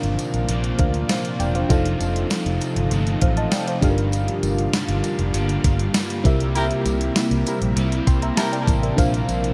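A straight 4/4 groove from a thumpy, up-front 12-bit drum machine and a round, punchy muted electric bass drives this romantic, glossy 1980s-style pop excerpt, with a soft FM electric piano bathed in chorus and shimmer reverb, an ethereal detuned pad, a biting double-tracked overdriven guitar and a very quiet jingly tambourine filling out the chords, while a dark, tight horn section adds vibrato-tinged stabs in the background from 6.6 s to 8.6 s during a band accent.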